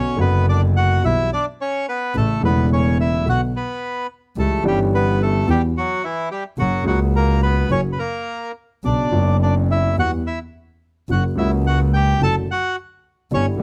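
A rubato 4/4 pulse around 108 BPM carries this sultry, melancholic tango fragment in B minor, where a reedy, mid-forward bandoneon sings the melody up front over a dark, mellow concert grand with audible action noise, deep bass and long sustain, while a single double bass, bowed sul tasto with a soft attack, lays down a pure, floating low line, the whole sound dry and closely detailed.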